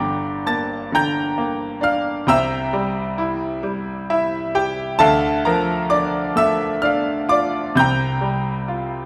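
A bright concert grand sits up front in a moderate concert hall reverb, its worn, intimate tone carrying audible action noise and deep bass. This short cut from a longer classical piece is wistful and melancholic: a lyrical solo in a rubato 6/8, ranging from G1 to A6 and moving through Gm, C7, Dmadd9 and C7sus4. A piano fill from 3.6 to 5.0 seconds leads into the Dmadd9 chord.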